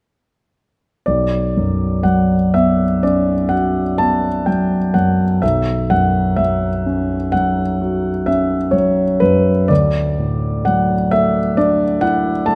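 In a flexible, rubato 9/8, this wistful and mysterious fragment of impressionist classical solo piano unfolds on a clear, intimate concert grand that sits up front with deep bass and audible action noise, playing from 1.1 to 12.6 seconds and moving from a Bmadd9 harmony to Dadd9 at 9.7 seconds, all set in a moderate reverb heard through close, detailed microphones.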